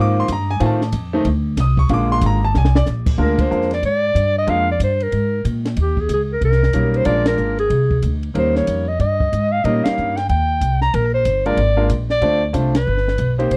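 A mellow clarinet carries the melody from 3.2 seconds, its soft attack and vibrato sitting up front in a jazz solo voice, with a slapback echo trailing its notes. This is playful, relaxed small-group swing and bop at 186 BPM in 4/4, with swung eighths in Bb mixolydian, cut from a longer piece. A woody, pizzicato upright bass with steel strings sits up front and anchors the low end throughout, while a clear, natural grand piano supplies accompaniment, dropping out briefly and returning at 6.7 seconds. A compact cocktail drum kit with a dark, smooth character, a high-tuned snare, a punchy kick and a rolled-off top comes in just after the opening, and its fill at 2.5 seconds leads into the clarinet's entrance. Band accents punctuate the tune, all captured in a dry, close 1970s-style studio sound with little reverb.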